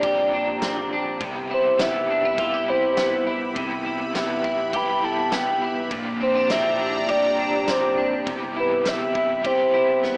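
Floating and ethereal, this dream pop excerpt is led by a soft, round, octave-layered synth melody sitting up front, coloured by vibrato, chorus, delay and plate reverb, over a swirling, detuned phaser pad holding bright sustained chords. Beneath them, a slightly broken-up electric guitar picks chorused, delayed arpeggios while a crunchy, double-tracked overdriven guitar with tremolo stays in the background, and a very quiet sine sub bass and a big-room acoustic kit with punchy kick, fat snare, ride and tambourine hold the floor. The harmony drifts between Bb69 and Cmaj7 in a wet, rough home-demo mix with a small-speaker sound.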